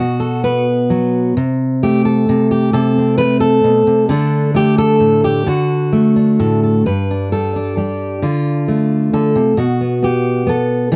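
Folk fingerstyle piece in a three-beat rubato feel, where a lone fingerpicked steel-string acoustic guitar with fresh strings and a full-bodied jumbo tone sits up front in a dark production with moderate studio reverb, carrying a nostalgic yet hopeful mood through shifting chords before a new section arrives at 6.9 seconds in this short excerpt cut from a longer piece.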